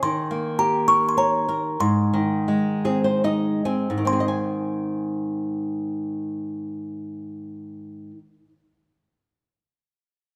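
A moderate recital-hall reverb surrounds this short excerpt, a gentle, innocent lullaby in Ab major and a rubato 3/4, with the pulse drifting between 67 and 107 BPM. A large music box carries the melody high, between Bb5 and Db6, its delicate, tinkling plucked tones slightly out of tune and colored by a boxy small-room character. Beneath it, an acoustic flamenco guitar sits up front, fingerpicked with a warm tone, audible finger squeaks and a reach from deep bass notes to high treble. The opening phrase slows down as the harmony moves from Eb7 to Ab, and a nylon-string guitar fill from 2.5 to 4.1 seconds leads into a new section. The music box stops at 8.3 seconds and the guitar just after, leaving the hall's tail.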